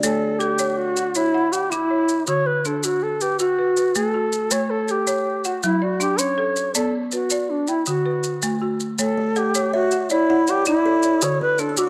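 Rippling and warm, this short excerpt from a longer southern African traditional piece sets an mbira-style interlocking cycle in a straight 12/8 at 107 BPM in A mixolydian, with an airy, expressive low wooden flute carrying the melody up front over woody hard-mallet folk marimba arpeggios, grainy close maracas, and a buzzing, bright kalimba that sounds at 0.0 seconds, returns at 9.2 seconds and adds a fill at 11.5 seconds, all colored by cassette tape and a moderate spring reverb in a homespun recording.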